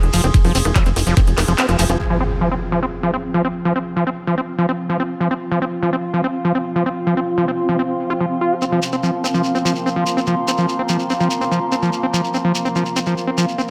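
Hypnotic, psychedelic trance in F minor at 145 BPM, this excerpt opens on a drop where a tight sawtooth sequencer bass, a grainy shekere and a filtered drum-and-bass kit with metallic hats, bongos, handclaps and ride cymbal drive forward before cutting away at 2.0 seconds, while a knocking, tape-toned electronic kick joins at 0.3 seconds and drops out at 1.3. An electronic impact then lands as a ring-modulated drone with moving overtones and chorus rides a long filter sweep over sidechain pumping. A cloudy, evolving granular pad lingers in the background, a squelchy, gritty acid bass riff with dub echo stays up front throughout, and the shekere returns at 8.6 seconds, all set in a moderate digital room reverb.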